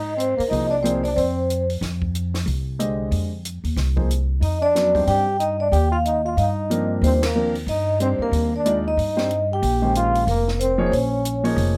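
Swinging at 185 BPM in 4/4, this intense, cool modal jazz cut sets a woody pizzicato upright bass up front and a dry cocktail drum kit with dark cymbals, high-tuned snare and tight kick beneath an intimate grand piano with audible action noise, while a mellow, ringing soft-mallet vibraphone carries the melody in plate reverb alongside a clear trombone second line with scooped notes, both pausing at 1.7 seconds and returning at 4.4 before a band accent hits at 7.2 seconds.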